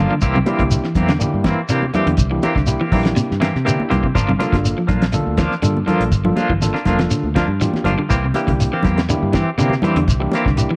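Lightly reverberant and close, this short afrobeat excerpt drives along at 122 BPM in a straight 4/4 with a defiant edge, moving from C7 to Gm7 and back. A cloth-damped drum kit with a fat snare and tight kick thuds beneath a grainy shekere and ringing, high-tuned congas set back in the mix, while a round, foam-muted fingered bass anchors the low end. Alongside, a barky, overdriven tine electric piano comps, a slightly broken-up guitar picks tremolo-treated arpeggios in the background, and a bright semi-hollow guitar cuts in with clean, hollow-toned stabs, also through tremolo.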